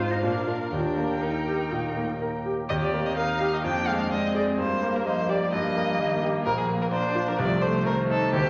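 This short excerpt of a quick classical-period movement for piano quartet opens with all four players together: a bowed violin carrying the melody, a cello on a second line, a viola in accompaniment, and a concert grand piano supporting beneath. The mood is graceful and spirited, set in Eb major at 127 BPM in 4/4, yet shaped with a rubato feel. The violin sits up front with a focused, vibrato-rich tone and a smooth top, and the cello shares that focused, warm quality in its lower register. Further back, the viola adds an expressive voice coloured by vibrato and portamento. The piano is clear and natural, its deep bass anchoring the ensemble, with the harmony moving from Bb to Eb and touching diminished chords around 3.6 and 7.4 seconds. A recital hall reverb gives the sound a wet, resonant space, and a layer of vinyl crackle lends an aged patina to the 8.5-second passage, which is cut from a longer piece.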